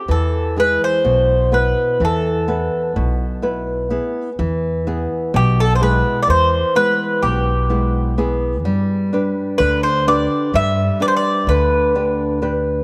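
In a straight 9/8 lilt at 126 eighth-note beats per minute, this reflective, wistful Greek folk piece, tuned slightly low to A4 = 438 Hz and cut from a longer work, has a picked Greek bouzouki carrying the melody with a warm, metallic double-string ring and some octave-doubled strings. Close behind it, a small, warm fingerpicked nylon-string guitar accompanies while a pizzicato upright bass on gut strings adds a woody, dark, thumpy low end, all three sitting up front. A moderate plate reverb gives the trio a lingering tail as the music moves into a new section at 4.4 seconds and the harmony shifts from E to G at 8.7 seconds.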